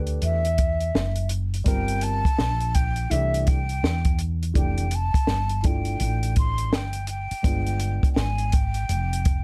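Warm and relaxed, this jazz-hop excerpt sways on a swung sixteenth-note groove, with a compact, dry cocktail drum kit up front pairing a punchy kick and a high-tuned snare with hi-hat, beneath a growly, round fretless electric bass that also sits close. A dark, mellow concert grand piano adds smooth, vintage-toned chords from Cmaj7 through Gm7, Cadd9 and Fmaj9 before settling on G7b9, dropping out at 8.5 seconds. Above it all, a breathy jazz flute with a soft attack and straight tone floats distant and hollow in light reverb, carrying the melody from 0.2 seconds.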